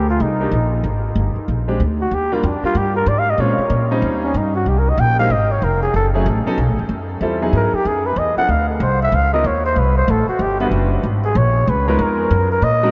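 Jazz excerpt at a brisk, swinging 188 BPM in Eb major with a warm feel, led by an up-front bucket-muted trumpet solo that is veiled and raspy, full of vibrato, scooped notes and growls, and trailed by a diffuse ambient delay, over a woody pizzicato upright bass and a clear grand piano with subtle chorus that enters at 0.4 s, all set in a huge, dreamy reverb with a dark, softened top end as the harmony drifts through chords from Cm9 to Gb69.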